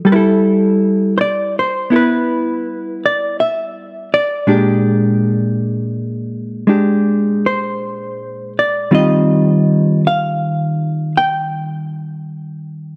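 A dark, clean hollow-body electric jazz guitar plays alone and up front in this late-night, romantic jazz ballad excerpt at 54 BPM in a swung 4/4, its fingered, compressed tone moving from G69 through Bb13 to settle on Eb69 in Eb major at 8.9 seconds, captured in a dry, close 1970s-style studio sound with light digital reverb.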